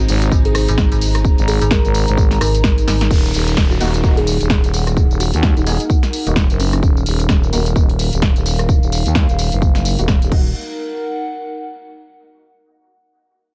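Aggressive, swaggering bass house with a swung groove opens on a drop where a woody kalimba melody with dub echo, very quiet bowed strings, a metallic overdriven FM bass, a growling, thick FM bass, a punchy layered kick and a house kit with tambourine and rim clicks sit over a warbling lo-fi pad. After a drum fill at 2.9 seconds, a background downlifter enters, and the growling bass and a bright, detuned orchestra-hit-like stab with phaser carry filter sweeps through to the pad ringing out alone until 12.4 seconds.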